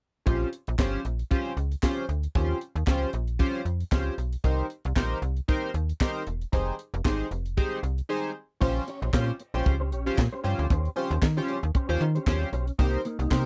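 A dry, close studio sound in an older style puts every part near the listener in this late-night, slick slice of early-eighties boogie funk, cut from a longer piece with a 16th-note swing. A tight acoustic drum kit sits up front with bright cymbals, a high-tuned snare and a tight kick, adding handclaps, hi-hat and crash, while a snappy FM bass with a metallic, digital attack and quick decay holds down the low end. A glossy, retro polysynth carries the chords through Bbm69, Eb13, Cm7 and Fm9, its sawtooth, square and pulse tones thickened by a sub octave, chorus, phaser and filter sweeps. After a brief break at 8.1 seconds, the second section opens at 8.6 seconds, where a dark, clean, compressed electric guitar enters with a fingered riff under ensemble chorus. The guitar sits lower in the mix than the rest as the progression cycles again until the cut at 13.5 seconds.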